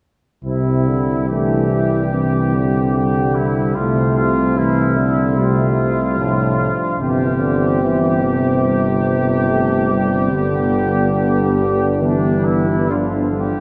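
Bathed in a wet cathedral reverb, this serene, hymn-like classical brass band passage in C major moves at 73 BPM in 4/4 with a rubato feel, as a distant trumpet section carries the melody over a clear trombone section, a French horn section playing a second line in the background, a warm solo euphonium with light vibrato and an up-front, mellow tuba bass, the harmony moving from C through F/C and C/G to G7 before the passage breaks off at 13.6 seconds.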